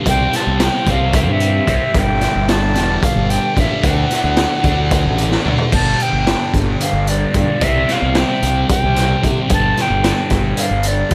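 A thick, double-tracked fuzz guitar riff with phaser and analog delay opens alongside a mellow tonewheel organ holding very quiet sustained chords through a slow rotary speaker, joined within a moment by a gritty, boomy garage drum kit, a round, punchy fuzz bass and a reedy, airy silver flute melody carrying its own delay. This trippy, kaleidoscopic psychedelic rock passage runs at 222 BPM in eighths in 7/8, cycling through C, Gadd9 and Dadd9 in G major. The dry, echo-heavy mix keeps the drums up front, and a drum fill at 5.3 seconds leads into the second section at 5.7 seconds.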